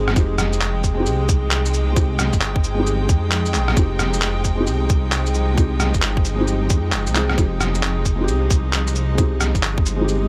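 Future garage with a nocturnal, wistful mood, this short excerpt rests on a single Fm9 chord over a swung sixteenth-note feel. A felt-muted upright piano plays soft, mellow accompaniment with a short sustain and audible action noise, its notes trailed by an analog delay. Alongside it, a chamber string section holds smooth, bowed chords with vibrato, while a dark, detuned saw bass rumbles low with a beating, saturated tone from tube saturation. Piano, strings and bass all breathe with sidechain pumping against an overdriven, tight electronic kick that sits up front in the mix. Around it, muffled, pitched-down rim clicks, shaker, cabasa and handclaps carry a sampler-style, tape-warm character. The sound is dry, with little reverb.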